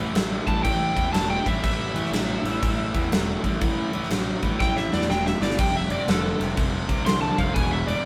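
The recording has the feel of a band playing live together in a stone room, with a moderate reverb that gives the short clip a heavy, brooding weight. It is blues rock and southern rock in a power-trio setting, with a swung 4/4 groove. A crunchy, double-tracked rhythm guitar sits up front playing a low riff, while a growly fuzz bass, picked and overdriven, holds down the bottom end beneath it. A huge acoustic arena kit drives the song with a punchy kick, a medium-tuned snare and crash cymbals in a pumping room sound, and it breaks into a fill at 4.6 seconds. From 0.5 seconds an overdriven slide guitar, bright and played with fingerpicks, takes the lead with a solo high above the band as the harmony moves from A5 to F5 at 5.6 seconds.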